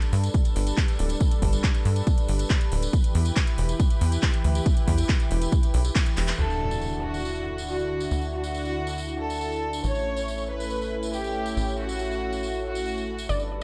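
A tight, driving sawtooth sequencer bass sits up front in this uplifting, soaring trance excerpt at 139 BPM in D major, its saturated, plucky tone pumping against a punchy electronic kick that runs from 0.3 to 6.0 seconds. Above them, a thick, airy unison pad with chorus and sidechain pumping holds sustained chords, moving from Gadd9 to Em and later from Dadd9 to A. A jingly acoustic tambourine runs throughout, while a house kit with filtered metallic hats, handclaps and crash cymbal fills out the opening half. A drum fill and band accent lead into the second section, where an electronic impact hits at 6.4 seconds and an earthy chamber violin section with light vibrato and delay enters, distant in character yet placed up front. At the very end a bright, detuned unison pluck with cassette-tape colouring and delay sounds a single D5, all within a dark production with light reverb.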